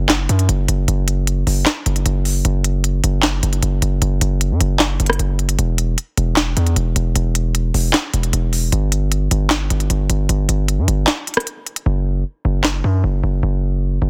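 A distorted, heavy 808-style bass with a noisy edge sits up front in this brooding, menacing trap excerpt at 153 BPM in a half-time feel, joined by an electronic drum kit of sharp snare, crisp hi-hats, rim clicks and handclaps through a dry, dense, heavily limited mix, with a break at 11.1 seconds before the hi-hats drop out from 11.9 seconds, the rest of the kit stops at 12.7 seconds, and the bass carries on alone to 14.1 seconds.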